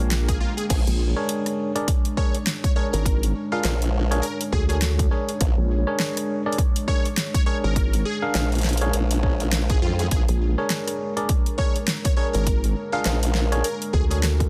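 A dry, dense and heavily limited mix carries this gritty, swaggering glitch hop excerpt at 102 BPM, swung on the sixteenths and opening on a Bb7#9 chord as a background electronic swell sounds until 0.7 s. Two up-front, saturated wobble basses drive the low end, one nasal and dark with a vowel sweep, the other a pulse-and-sine formant sweep. Around them sit a punchy electronic kick, a pop kit with fat snare, bright hats, rim clicks and crashes, a moody detuned analog pad pumping under sidechain, clean tine electric piano stabs with 12-bit grit and delay from 1.2 s, and a catchy, bright, detuned unison lead swirling with phaser, chorus and delay.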